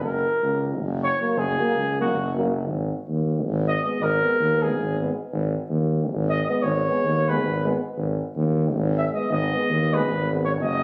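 A warm flugelhorn carries a restless, virtuosic melody from the first moment, joined by a clear, up-front tuba with vibrato anchoring the bass in this Balkan brass band excerpt in G# minor, set in a brisk 7/8 at 316 BPM in eighths. At 1.2 s a mellow trombone and a smooth-topped euphonium, both with light vibrato and sitting further back, enter with accompaniment, and at 2.7 s the harmony moves from F# to G#m. Light reverb and a distant, roomy phone-in-the-room character give the short fragment an informal, live feel.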